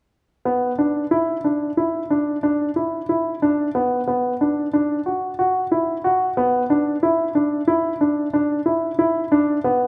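Moving in a straight 9/8 at 183 eighth-note beats per minute, this short contemporary instrumental excerpt in B minor feels urgent yet pensive. A single concert grand piano plays arpeggios between B3 and F#4 from 0.5 to 9.9 seconds, its intimate, natural tone sitting up front with the soft clatter of its action clearly audible. A moderate recital-hall reverb with a 1.4-second decay adds a gentle halo around the notes.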